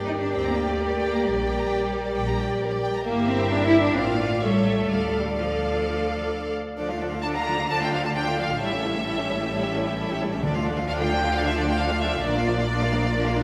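A wet concert-hall reverb surrounds this stormy, dramatic classical-period movement for symphony orchestra, cut from a longer piece, moving quickly at 132 BPM in 4/4 from G minor toward D minor. A clear, distant violin section carries the intense vibrato melody over a soft-attack, sul tasto second violin line. Rich violas supply the accompaniment while focused cellos and close double basses anchor the bass, and mellow French horns sustain chords in the background until 6.5 seconds. Hard-mallet timpani strike a dry, articulate D between 10.4 and 11.1 seconds.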